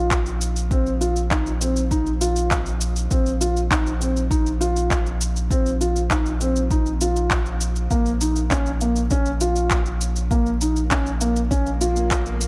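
A felt-muted upright piano, mellow and dark with tape echo and shimmer reverb, carries an intimate riff over a round analog bass with sidechain pumping, a deep electronic kick and electronic handclaps and shaker re-recorded in a large room, in this intimate, cinematic piano and strings electronica excerpt whose harmony moves from Bbsus24 to Bbm at 7.9 seconds before a background electronic swell arrives at 11.7 seconds.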